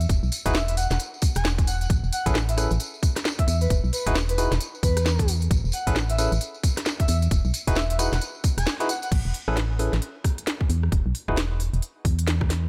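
This UK garage clip rolls along in a swung two-step groove at 133 BPM in A lydian, carrying a soulful, sunny mood. An up-front, hollow FM bass with an organ-like, percussive bite anchors the low end from the start alongside a tight electronic kick, while the garage kit adds a cracking snare, crisp hats, rim clicks and crash, all with a tape-warm character from being re-recorded in a large room. A jingly, bright tambourine shimmers on top until 9.1 seconds. From 0.5 seconds a breathy, flute-like synth lead with gentle chorus, vibrato and tape echo floats over barky, lightly overdriven electric piano stabs that outline chords moving through Amaj9, E5 and Emaj9. The opening passage works as a drop, capped by a band accent at 8.7 seconds, after which the lead and tambourine stop and the bass, drums and stabs carry on into a short closing stretch that lets go of its chords near the end, all with little reverb.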